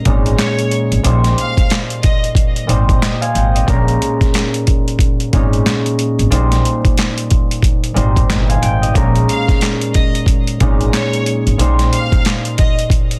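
A dense, heavily limited, dry mix with vinyl crackle frames this dark, reflective boom-bap hip-hop cut, moving at 91 BPM with a swung 16th feel in Bb dorian as Bbm7 alternates with Abmaj7/Bb. A bright, ringing concert harp with a cassette-tape tint sits up front beside a gritty, pitched-down sampler drum kit of thumpy kick, high-tuned snare, hi-hat and handclaps, while a woody pizzicato upright bass holds the low end until 11.9 seconds. A distant, lush bowed violin section with vibrato and digital delay drifts in briefly at the start and returns from 9.3 seconds, in a short fragment lifted from a longer piece.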